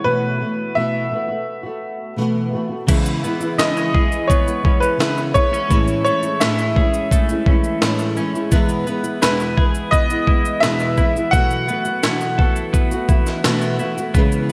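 Acoustic pop at 85 BPM in 4/4, tender and wistful, this excerpt opens with an intimate, woody upright piano carrying the melody, slightly detuned and with audible action noise, over a double-tracked, thumb-plucked flamenco guitar whose finger squeak can be heard. At 2.9 seconds a clean, twangy twelve-string electric guitar adds picked arpeggios with subtle chorus, and a gritty, pitched-up breakbeat sampler-style kit arrives up front with thumpy kick, high-tuned snare, shaker, crash and gated reverb, as the chords move from C#m7 through Amaj7 and E to B7sus4. A lush hall reverb and bright 1980s-style digital production frame the piece, and the piano stops at 13.7 seconds.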